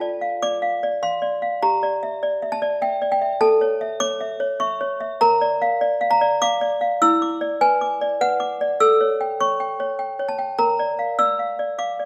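Close, detailed microphones place a clanky, bell-like toy piano up front, its plastic hammers and slightly out-of-tune notes sounding full and dry against the moderate reverb of a recital hall. This classical lullaby is wistful and fragile, moving in a straight 3/4 at 100 BPM as the solo toy piano plays from E4 to E6 for the full 12.1 seconds. The harmony drifts from Dm through Em7b5/G, A, Bb, E7 and A7 before reaching Bb, in a brief excerpt cut from a longer piece.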